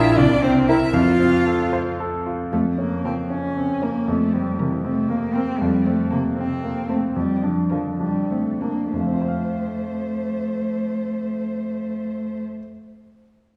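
A clear, vintage-toned grand piano leads the accompaniment at the front of this lively, cheerful classical-period piano trio movement in F major and 6/8, moving at a quick, rubato 63-79 BPM in dotted quarters that slows from 4.8 to 8.9 seconds, while a focused violin with vibrato sings the melody above a rich, smooth, up-front cello second line, all heard from further back in a reverberant recital hall in this cut from a longer piece.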